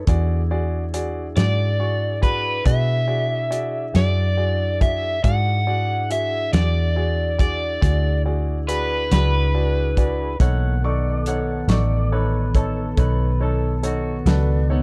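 A rollicking yet laid-back slow blues in 12/8, this short cut from a longer piece sits in a dark, warm small room. Up front, a soul drum kit with a fat snare and tight kick pumps along beside a round, foam-muted fingered electric bass that sounds dark and punchy. A mellow, flute-like tonewheel organ holds sustained chords through a slow rotary speaker, while a clear grand piano adds accompaniment, its short sustain and audible action noise giving it a natural closeness. From 1.4 seconds a crunchy overdriven guitar carries the melody over an E7 chord. When the harmony moves to B7 at 10.4 seconds, a bright, twangy guitar through a small old amp takes over with a slightly broken-up second line, bathed in spring reverb.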